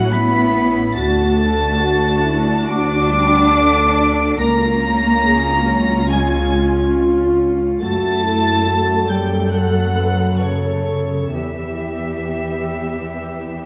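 A wet scoring-stage reverb surrounds this moving, uplifting cinematic fragment, cut from a longer piece, with its uneven, rubato pulse. High above, a pure, floating symphonic violin section carries the melody with soft-attack sul tasto bowing, while an expressive concert flute and an intimate chamber violin section sitting in the background share a second line. Dark, woody violas provide the accompaniment, a warm French horn section holds smooth sustained chords, and a rich, up-front double bass section joins a close studio cello section on the bass, every part sounding from 0.0 to 13.7 seconds.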